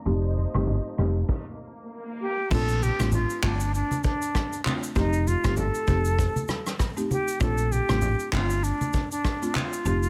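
Breezy and joyful, this afrobeats cut from a longer piece moves at 98 BPM in Bb major with a swung sixteenth feel, opening behind a filter sweep as a lush, detuned sawtooth pad with chorus holds chords until 1.3 s, then an electronic swell carries into the full groove at 2.5 s. A buzzing, woody marimba and a dark, round hollow-body electric bass sit over a soft brush kit with tight kick, rim click, handclaps, shaker and crash, while low-tuned congas murmur in the background. From 2.2 s a hollow, close-miked concert flute with vibrato and delay takes the melody over alternating F7 and Bbmaj7 chords, all in a studio reverb with a low-pass filtered sheen.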